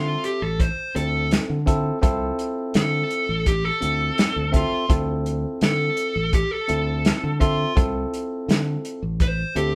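Smoky and mournful, this straight-eighth soul blues in D minor moves at 84 BPM over a single Dm7 chord, with a dark, smooth overdriven lead guitar taking a solo from the start, set up front against a bell-like, bright tine electric piano. A round, punchy fingered electric bass sits underneath, while an acoustic soul drum kit with a rolled-off top, punchy kick, medium-tuned snare and hi-hat enters at 0.2 seconds. The band plays live together in one room with light reverb, and the passage is cut from a longer piece.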